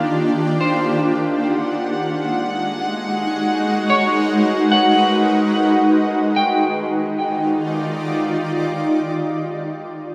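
Drenched in wet spring reverb and echo, this peaceful, weightless ambient excerpt in 3/4 floats on a bright, up-front pad of sustained, slow-attack chords with an ethereal octave-up shimmer, moving from Ebmaj9 to Abm7. Over it, a slightly broken-up electric guitar picks arpeggios through lush chorus and analog delay, and a rich, intimate violin section holds a sul tasto Gb5 with light vibrato from 1.5 to 6.4 seconds.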